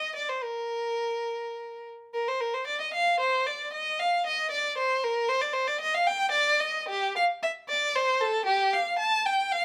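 Classical baroque-style suite movement for unaccompanied violin, heard here in a brief passage cut from a longer piece. The mood is serene yet dance-like, moving in a lilting 6/8 at roughly 69-78 BPM counted in dotted quarters, with a flexible rubato feel in Bb major. A single bowed violin plays throughout from 0.0 to 9.6 seconds, ranging from G4 up to A5, its tone rich and expressive with vibrato and portamento gliding between notes. The instrument sits up front yet carries a slightly distant quality, framed by light reverb. The opening phrase occupies the first 2.1 seconds before the same material returns and unfolds through to the end.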